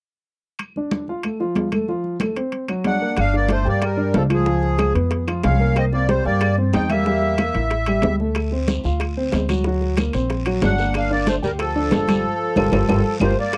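Sultry, sophisticated Afro-Cuban jazz opens at 0.6 s with woody claves, thick-skinned congas and ringing metal-shell timbales, joined almost at once by an intimate grand piano up front with its action noise audible. At 2.9 s a sweet, reedy accordion with light tremolo tuning and tape echo carries the melody over a distant, vibrato-laden tenor saxophone second line, while a dark, thumpy pizzicato upright bass and tight, high-tuned bongos arrive at 3.2 s, and a raspy guiro joins later. Cut from a longer piece and captured close and dry in a 1970s studio style with light reverb, the passage closes on a band accent and a drum fill.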